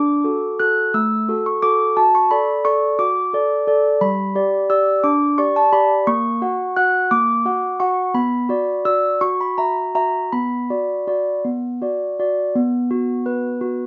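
A classical lullaby for solo handbells, this brief passage is cut from a longer piece and carries a dreamy, tender mood in 6/8 with a freely breathing rubato. The handbells span from G3 up to F#6, and their tone is clear and mellow, with soft clappers giving each stroke a smooth, dark roundness as the notes ring out. They sit up front in a wet booth ambience with a short decay, and the sound tops out at 7.5 kHz, lending the recording a gentle, rounded quality. The harmony opens on D and darkens toward B minor from 4.0 s, passing through G and an F#7 before settling on Bm. At 12.6 s a new section begins on a bare B5 chord, and the passage breaks off at 13.9 s.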